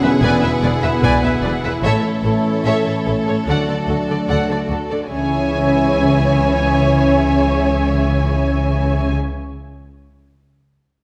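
At a steady, straight 74 BPM in 4/4, this epic, heroic orchestral film-score fragment in C# phrygian sets a lush, vibrato-rich violin melody over a background second violin line, expressive viola with portamento, rich studio strings, a very quiet mellow French horn section and soft-attacked trombones holding sustained chords, a close background cello and an up-front double bass on the bass line from 0.2 seconds, and a brief dry taiko passage with heavy sticks from 1.0 to 1.8 seconds, all within a scoring-stage reverb as the harmony moves through E7, A, D and C#m.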